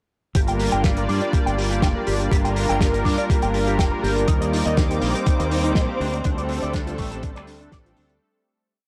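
A dry, gritty cassette-tape sound with light reverb frames this sensual, cosmic nu-disco piece in G minor at 122 BPM, where a warm, detuned sawtooth pad with chorus, sidechain pumping and analog delay holds chords with syncopated pushes, an overdriven, thumpy four-on-the-floor electronic kick and a damped 70s kit's hats and disco-backbeat snare drive the groove, a bright fingered bass plays a dotted rhythm, a twangy envelope-filtered guitar picks a repeating 16-step riff, and from 4.3 seconds a veiled, muted violin section adds distant bowed chords before the fade-out begins at 5.6 seconds.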